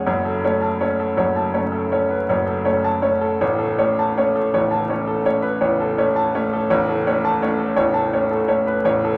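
A solo grand piano opens at once, its clear, smooth tone placed up front in this serene, nostalgic romantic nocturne. The playing moves with rubato in a 9/8 metre, and the notes have a short sustain that gives the fragment a vintage character. The harmony settles on F#m before shifting to Aadd9 at 3.4 seconds, reaching from the piano's deepest register up into its higher range. A recital hall reverb surrounds the sound, while a vinyl crackle adds to its aged, wistful feel. The passage lasts 9.2 seconds and is cut from a longer piece.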